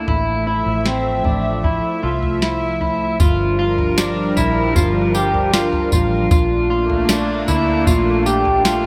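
A lush, detuned sawtooth pad with chorus, a bright, twangy electric guitar picking arpeggios up front through subtle chorus and delay, and a dark, round muted bass all open this blissful, ethereal dream pop excerpt at 77 BPM, with a soft analog rhythm box of deep kick, crisp snare, tambourine and toms joining at 0.1 seconds, overdriven for a slightly gritty edge. The harmony moves from Fmaj7/A to Gm7 at 3.2 seconds and then to Bbmaj7, all bathed in a wet concert hall reverb that gives the steady 4/4 groove a floating, spacious glow.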